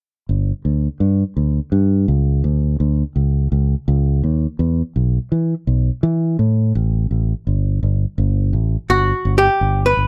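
A fingered electric bass opens this bright, driving progressive instrumental excerpt at 0.3 s, its punchy, direct amped tone sitting up front as it carries the bass line alone through the opening section. The piece moves in a fast 9/8 at 251 BPM counted in eighths, with a straight feel in G lydian. Under the bass, the harmony passes through G5, a chordless stretch, E5 and Gsus2. At 8.9 s a miked and amplified archtop guitar enters up front with a clean, picked melody of dark, hollow-body character. A light reverb gives the short passage a touch of space before it cuts off at 10.1 s.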